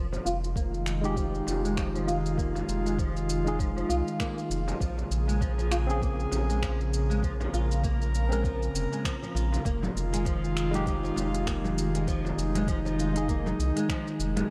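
Meditative and mystical, this 14.5-second excerpt of organic downtempo in F minor moves at 99 BPM with a gentle 16th-note swing, as fingerpicked flamenco guitar arpeggios under a filter sweep drift over an airy, breathy pad with sidechain pumping, a round analog bass sitting up front, a barky, worn, slightly out-of-tune electric piano entering at 1.0 seconds with light overdrive, a soft electronic kick, an organic electronic kit of congas, finger snaps, crisp hats and shaker, and a deep, distant frame drum, all moving from Fm7 to Bbm7 and back in a dreamy mix soaked in plate reverb.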